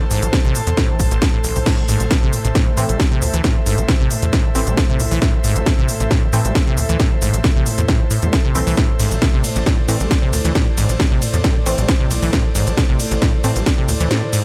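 Hypnotic and industrial, this driving peak-time techno cut in A harmonic minor at 135 BPM pumps on an overdriven, up-front electronic kick and a layered kit with cracking snare, smooth hats, ride, crash and shaker, while a tight, punchy sequencer bass with tube saturation drives beneath a squelchy, resonant acid bass riff, a deep, moody ambient pad drone, a breathy, airy pad texture, and muted, detuned dub chord stabs with echo that enter at 2.8 seconds, all held on A minor in a short section cut from a longer piece.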